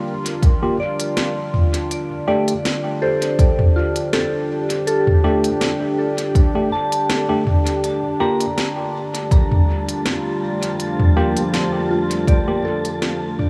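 Set in a light digital small-room ambience, this hazy, meditative ambient dub fragment pairs a deep, dark, detuned pad of sustained chords, soft FM bell arpeggios through chorus and tape echo, and bright, clean tine electric piano stabs thrown into dub echo, all over an up-front organic electronic kit with a woody snare and smooth hats and a punchy, overdriven electronic kick, while an airy, wind-like tuned noise texture drifts in at 8.8 seconds before the fade-out from 11.8 seconds.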